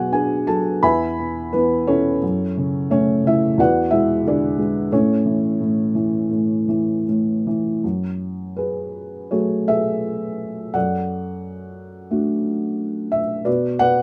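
Lightly reverberant and intimate, this relaxed excerpt from a longer classical piece features a felt-muted upright piano, boxy and up front, playing a lyrical solo in 4/4 with rubato at 76-91 BPM, moving from A major into F# minor at 7.8 seconds.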